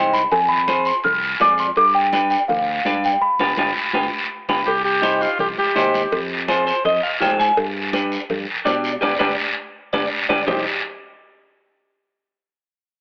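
A straight 4/4 cumbia at 165 BPM sets a passionate, fiery mood in C harmonic minor, with guiro, bright high-tuned congas and ringing cowbell and timbales keeping the groove under a punchy fingered electric bass and a clean, hollow-toned semi-hollow electric guitar up front. A bell-like, delicate celesta with tape echo carries the melody until 4.7 seconds, when a raspy, gritty tenor saxophone takes a brief forceful second line over the move from Cm to Fm, while band accents and clean electric guitar fills punctuate the phrases. The mix has a wet spring reverb and a telephone sound, and the passage is cut from a longer piece.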